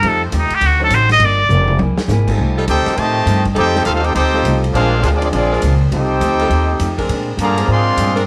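A bright, nasal trumpet with a straight mute opens this brassy, swinging big band excerpt, playing a short solo up front over a woody, thumpy pizzicato upright bass. Behind them, a concert grand piano with audible action noise and long sustain and a fingerpicked steel-string acoustic guitar sit in the background, while a vintage drum kit with dark cymbals, a punchy kick and a pumping small-room sound adds a fill at 1.5 seconds. At 2.6 seconds a tight saxophone section with a warm vibrato enters on sustained chords in the background, and at 2.7 seconds a clear, present trumpet section takes over the melody with light vibrato and a soft attack, joined by a trombone section on a second line. The harmony leans on rich ninth and altered dominant chords that give the passage its jazzy colour. Light reverb and studio ambience surround the whole band.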